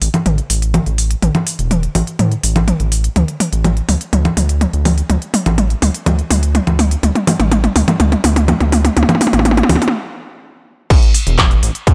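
Melodic techno with a melancholic, hypnotic pull, cut from a longer piece: a gritty, saturated sawtooth synth bass with sidechain pumping and a resonant filter sweep drives a layered deep house drum kit of congas, handclaps, smooth hi-hats, toms and crash cymbal, recorded with a small room ambience. The build-up carries a drum fill until 9.9 s, then a brief stop gives way to the drop at 10.9 s, where an overdriven, distorted electronic kick enters up front in a dry mix.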